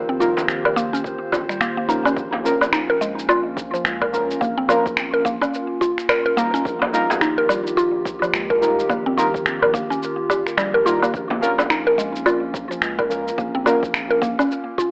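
A dry, gritty recording with the character of cassette tape and AM radio frames this meditative, earthy organic downtempo excerpt, swung lightly in 4/4. A woody, up-front mallet-like synth pluck spins arpeggios through phaser and analog delay over a deep, mellow chord stab with lush chorus and a warbly, nostalgic tape-like pad, both pumping with sidechain, while a round analog bass sits dark in the background and a glassy harmonics texture drifts through only the first 2.2 seconds. Compressed, sampler-style shaker, finger snaps and woodblock sit up front, a punchy electronic kick joins at 1.0 seconds, and a hard-handed frame drum adds brief acoustic accents.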